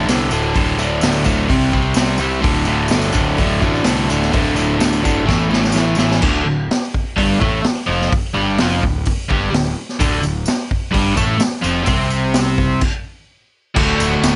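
Garage rock with a rowdy, raw edge, this excerpt drives along at 127 BPM in a straight 4/4, built on power chords centred on D with brief moves to C and A. A crunchy, overdriven electric guitar, picked and double-tracked, sits up front and bright, carrying the riff from the opening instant to the close at 14.4 seconds. Beneath it, a fuzz-soaked picked electric bass adds punchy, overdriven low end, while a vintage acoustic drum kit with a high-tuned snare, punchy kick and dark cymbals pushes forward in a studio room sound, working across hi-hat, ride and crash. A jingly tambourine rattles in the background, dropping out at 6.2 seconds after a drum fill and returning at 10.0 seconds. Near the end the band hits a stop before landing back on D at 13.8 seconds, all under a light reverb with a rolled-off, vintage top end.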